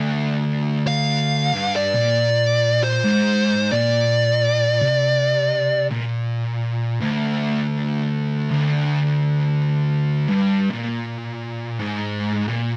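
A thick, double-tracked fuzz guitar riff opens this brooding, heavy metal fragment in D minor at a slow 55 BPM with swung eighths in 4/4, and a distorted, up-front fuzz lead guitar sings a high melody over it from 0.9 to 5.9 seconds, both captured as a band playing live in one room with moderate studio reverb.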